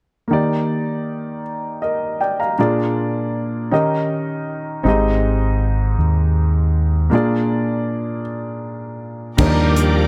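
A clear, intimate grand piano opens this slow, reverent, uplifting gospel passage in 6/8 at 53 BPM in Eb major, its action noise audible as it moves from Ebmaj7 through Bb7, Eb7 and Abmaj7. A round, punchy fingered electric bass sits up front from 4.8 seconds, and after a break beginning at 7.1 seconds more parts join at 9.4 seconds. There a reedy tonewheel organ with key click, light overdrive and slow rotary speaker arrives with a lush bowed string section in the background and a crisp drum kit of crash, hi-hat and punchy kick, all under light reverb.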